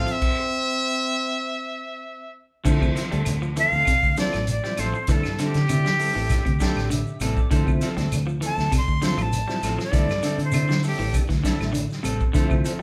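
Afrobeat at 99 BPM in D minor, intense and funky, opening on a stop with a brilliant, forceful trumpet and a mellow trombone before a breathy, reedy jazz flute takes a solo from 2.7 seconds, backed by an up-front vintage drum kit with dark cymbals and a tight kick, round foam-muted fingered bass, clean fingered electric guitar stabs, a twangy guitar at the edge of break-up playing arpeggios through spring reverb, a percussive tonewheel organ on a slow rotary speaker that fills at 6.3 seconds, grainy shekere and very quiet woody claves, captured as a band playing live in one studio room.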